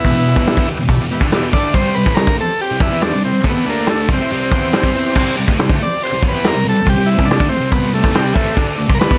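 Garage rock with a gritty, menacing edge, this short cut from a longer piece drives along at 140 BPM in a straight 4/4. An overdriven combo organ carries the melody from the start, its buzzy, lightly vibrato-tinged tone sitting up front as a solo running the full 9.2 seconds. Beneath it, a thick fuzz guitar, double-tracked and picked with a bright, distorted bite, plays a riff spanning E2 to E4. A vintage acoustic drum kit with a punchy kick, medium-tuned snare, hi-hat and dark crash cymbals sounds rolled-off and mid-forward in a studio room. Very quietly in the background, a clean combo organ holds sustained chords with heavy vibrato, while the harmony moves from E minor through C5 and D5 power chords under a light reverb.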